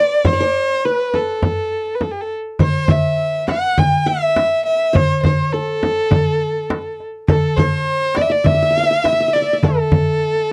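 A dry, close, 1970s-style studio sound frames this festive, passionate Arabic maqam ensemble excerpt in A maqam rast at 102 BPM, where an up-front bowed violin sings the melody with vibrato, portamento and a soft attack, a bright-edged qanun played with fingerpicks carries the second line on its triple strings, a deep frame drum struck with soft hands sets the pulse from the start, and a crisp, saturated metal-shell darbuka joins at 2.6 seconds.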